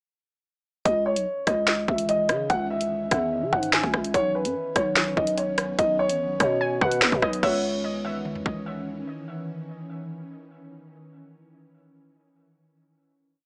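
A small-speaker, echo-heavy mix with light reverb frames this short, menacing drill track at 146 BPM in a half-time feel, its cold mood set by a dark, boxy concert grand piano looping a tape-echoed melody up front over C#madd9 and Badd9 chords. A hard-clipped kick, sharp snare layered with finger snaps and skipping hats drive the drill beat, while a growling, buzzy 808-style bass holds long sub-bass notes that follow the kick with pitch slides, and an ethereal, airy pad with ensemble chorus sustains chords from 1.7 seconds. At 6.6 seconds a warbling, lo-fi pluck adds a sparse counter-melody through chorus, phaser and tape echo, and the pad carries the final C#madd9 chord out to 11.5 seconds.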